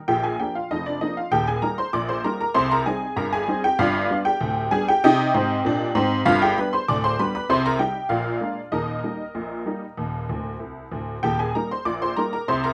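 Ragtime piano in Eb major at 97 BPM in a straight 2/4, cheerful and lively, played by a lone honky-tonk upright piano that sits up front with a detuned, jangly, vintage brightness and a touch of light reverb. The harmony moves from Bb through Eb, Cm and G7 before resolving via Bb7 back to Eb, with the piano ranging from deep bass to high treble. A honky-tonk fill at 10.3 seconds leads into a restatement of the opening section at 11.2 seconds, and the excerpt is cut from a longer piece.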